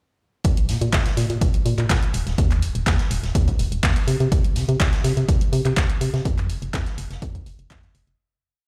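Heard as if played over a big sound system in a bare stone room, this short piano house piece carries little reverb of its own, and its soulful, bittersweet mood comes through at a straight 124 BPM in 4/4. It opens straight into the drop at 0.4 seconds and runs until 8.2 seconds, fading out from 5.6 seconds. A dry, punchy analog kick sits up front with a four-on-the-floor pulse and stops at 7.8 seconds. Beneath it, a hollow, organ-like FM bass with a fast attack and dark decay jumps between octaves from Eb1 to C3, pumping against the sidechain. A layered, programmed house kit adds claps and closed and open hi-hats for the hats and backbeat. Far back in the mix, a very quiet vintage acoustic kit with a medium-tuned snare and a rolled-off top plays a looped breakbeat with edits, lending a natural studio-room color.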